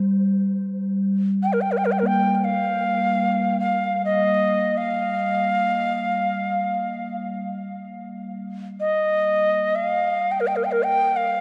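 The recording is dark and warm, set in a huge, wet ambient reverb that rings on for 7.1 seconds and wraps the sound in a haunting stillness. This meditative world piece moves in free time, and the passage is cut from a longer work. A bronze singing bowl opens at 0.0 seconds, close-miked and dry up front, giving a full, metallic ring with slow beating, struck with a suede striker. At 1.4 seconds a cedar flute enters with the melody, its woody, airy tone mellow and rounded by rolled-off highs. The flute sits up front, with tongued notes, a chiff at the attacks and vibrato, carrying on alone after the bowl stops at 9.3 seconds.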